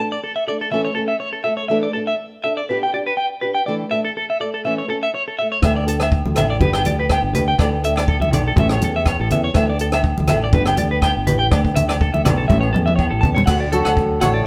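A live band plays together in a moderate stone room, in this joyful highlife guitar excerpt at 122 BPM in D major, with a light swing cycling through Dsus2, G and A. A fingerpicked flamenco guitar and a bright, twangy electric guitar on the edge of break-up, rippling with harmonic tremolo through its arpeggios, open alone before a round, punchy fingered bass and a dry compact cocktail kit with dark cymbals arrive at 5.6 s, along with distant ringing agogo bells and, soon after, low-tuned congas in the background. A drum fill leads into the final D chord, where a boxy fingerpicked swing-style acoustic guitar takes the melody at 13.7 s and a veiled, bucket-muted trombone adds a forceful second line with light vibrato.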